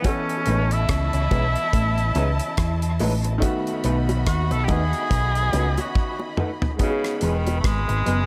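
A clear tenor saxophone with vibrato and dub echo plays a tender solo over a lush bowed violin section, worn grand piano with its own echo, a dry 70s drum kit with a tight kick and very quiet low-tuned bongos in this sweet lovers rock reggae fragment at 71 BPM, joined at 0.5 seconds by a round, punchy hollow-body bass, a twangy envelope-filtered guitar riff with echo and slightly broken-up lo-fi guitar stabs, before a drum fill at 6.0 seconds leads into a new section on Emaj7 at 6.8 seconds.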